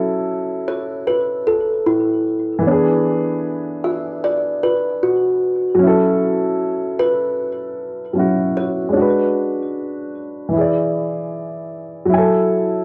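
Hip hop at 76 BPM in F# minor, reflective and nostalgic, with a lazy swung sixteenth feel and a cassette-tape haze over a short studio reverb. A dark, mellow upright piano carries the chords up front through a low-pass filter, moving from F#m7 and E7 toward a closing F#m9, while a plucked kalimba with a hollow, boxy ring and plate reverb sings the melody from 0.7 to 8.7 seconds. Once the kalimba drops out at 8.7 seconds, the woody piano plays alone through a break from 8.9 to 12.1 seconds and on until the excerpt ends.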